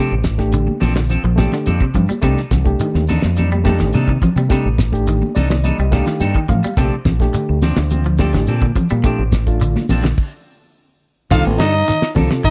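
Dry and close, this short cut from a longer afrobeat piece sounds like a small 1970s studio room, with a driving, funky straight feel in 4/4. A damped drum kit with a fat snare, tight kick and dark cymbals sits under a round, punchy fingered bass that stands up front, while a grainy, close shekere and high-tuned, thick-skinned congas in the background fill in the groove. An overdriven reed electric piano with a fast tremolo comps through a combo amp. A twangy guitar at the edge of break-up picks low arpeggios with a warbly pitch drift, and a clean, bright guitar adds stabs soaked in spring reverb. The harmony moves between Bbmaj9 and Cm69, the electric piano plays a fill at 5.1 seconds, and the band hits a stop at 10.2 seconds. At 11.3 seconds a raspy, growling trumpet takes the melody up front, with a forceful, distant trombone playing a second line beneath it.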